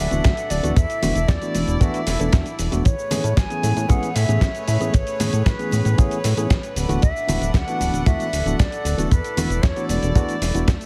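A tightly compressed, radio-like sound in a small room frames this feel-good, groovy nu-disco cut in A major at 115 BPM, where a pure, straight-toned concert flute carries the melody with delay over bowed chamber strings with a reedy gut-string tone, a bright tine electric piano and a glossy, saturated chorused synth bass, with sidechain pumping on the strings, piano and bass. A dry, up-front kick anchors a gritty, tape-warm sampler-style kit of snare, hi-hat and cabasa, while very quiet ringing congas play from 1.0 to 10.0 s. The chords move through D6, E7sus4 and Amaj9, and a faint electronic swell enters at 10.5 s as the fragment is cut from a longer piece.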